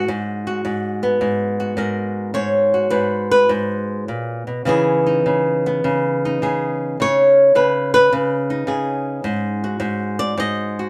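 Solo jazz in G# minor at 106 BPM, swinging and smoky, with a rubato looseness to its 4/4 swing. A single flamenco guitar carries the whole 10.9-second excerpt, fingerpicked and up front, its fresh strings giving a bright acoustic bite as it moves through G#m9, C#m9 and a bare G#7 near 9.2 seconds. A wet studio reverb lends the live-room sound a soft halo.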